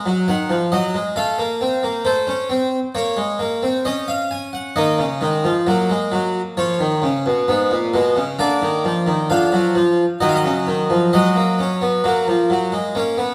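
In a straight 4/4 at a stately 66 BPM, this contemplative, serious baroque-style three-part fugue in E-flat minor unfolds on a solo French-style harpsichord tuned to A4 = 436 Hz, its airy, brilliant, plucked tone full and up front from three sets of strings across a range from Ab2 to Ab5, set in a reverberant recital hall, moving through minor, major and diminished harmonies before shifting to a new section at 12.0 seconds in this short cut from a longer piece.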